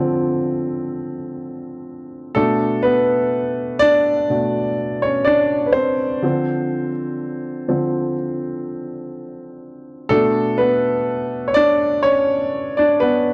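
Longing and sensual, this short R&B excerpt, cut from a longer piece, rests entirely on a solo grand piano that plays from start to finish across its 13.3 seconds. The piano sits up front with a warm tone, moving through a range from B2 to D5. Its harmony sways between Dm7 and Bm9, returning to Dm7 at 6.2 seconds before settling again on Bm9 at 10.1 seconds. The feel is in 4/4 with a gentle swing on the sixteenth notes, giving the slow pulse a relaxed lilt. Light reverb and small room ambience surround the piano, while the dry, gritty hardware character of the recording lends it an intimate, unpolished edge.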